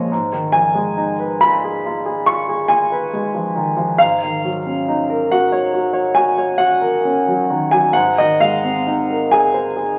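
A concert grand piano plays alone and sits up front, its intimate tone carrying deep bass and audible action noise that gives the sound a natural, close-up presence. This is a wistful, hazy fragment of impressionist classical solo piano in a slow 9/8, played with free rubato and tuned to A4 = 436 Hz. The harmony drifts from Abm6 to Ebm7/Ab at 4.0 seconds, then settles on Ab69 at 7.9 seconds, spanning Ab2 up to Db6. A wet stone-room reverb surrounds the instrument, while the crackle of a very old 78 rpm record lends the whole piece an aged, dreamlike veil. Cut from a longer piece, the passage lasts only about ten seconds.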